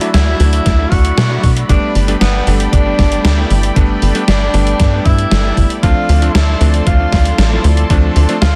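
Opening on a detuned analog pad with chorus and sidechain pumping, clangy electric grand piano stabs and an 80s drum machine's hi-hat and gated-reverb snare, this driving, nostalgic synthwave excerpt brings in a distant tenor saxophone with light vibrato and digital delay on the melody over a punchy, up-front sawtooth sequencer bass, adds a thumpy electronic kick at 0.7 s, and moves through Dadd9, Gadd9 and Dm7 in a dense, heavily limited master.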